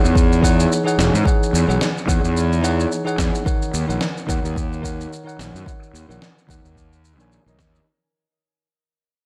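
A growly, overdriven fuzz bass sits up front in this wistful sunset chillout excerpt at 109 BPM with a gentle 16th-note swing, joined by a bright, bell-like tine electric piano softened by a low-pass filter and tape echo, a gritty shaker and fat snare, and a deep electronic kick entering at 0.2 s, all bathed in light digital reverb as the harmony moves from Emaj13 to D#m7 at 3.5 s under a fade-out that runs through its whole length.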